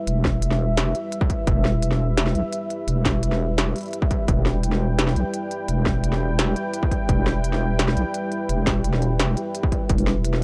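Heavy and spacious, this half-time drum and bass excerpt moves at 171 BPM over a single E minor chord. A moody, detuned sawtooth pad with a slow attack holds sustained chords under chorus and sidechain pumping, while a deep, square-and-sine wobble bass with a fast attack sits up front, joined by an industrial kit of clanging snare and crisp hats and a distorted electronic kick that enters at 0.2 seconds and stops at 10.0 seconds. The sound is dry and gritty, with the drums carrying a tape-warm, small-room character.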